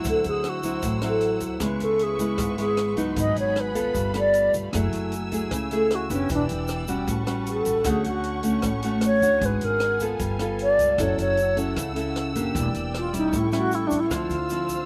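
This excerpt of a sophisticated, breezy bossa nova opens at once with a fingerpicked nylon-string guitar, a lush bowed violin section holding sustained chords, woody pizzicato upright bass and a grainy, bright tube shaker sitting close and dry in the background. A mellow alto flute carries the melody as a solo throughout, pure and expressive with a soft attack and vibrato, placed up front yet sounding distant and touched by a slapback echo. An open jazz drum kit with a boomy kick, hi-hat and rim click keeps a straight 4/4 at 154 BPM beneath the small, warm guitar, whose finger squeak can be heard. The harmony moves through rich jazz chords, from D9 and C#m7 toward Dmaj7 and on to a closing Dm9. The violins stay smooth and even, and the whole recording has an open, natural feel with little reverb.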